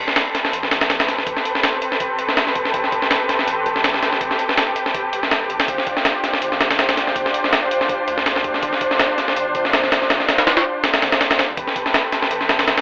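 Dark and atmospheric, this drum and bass cut leans toward jungle, with a lightly swung sixteenth-note feel and a telephone-like sound bathed in a moderate plate reverb. A muted studio string section, played con sordino, holds veiled, bowed chords with vibrato and a smooth top, moving from Am9 to G7sus4 at 5.7 seconds and back to Am9 at 11.6 seconds. From 0.1 seconds a sampler-style breakbeat kit sits up front, pitched up and compressed, pairing a thumpy kick and high-tuned snare with hi-hat in a gritty, tape-warm character and its own studio reverb. A soft dub sub bass joins at 0.5 seconds, deep and round with a sustained tone blending triangle and square waves, tucked in the background beneath the strings and drums. The passage is cut from a longer piece.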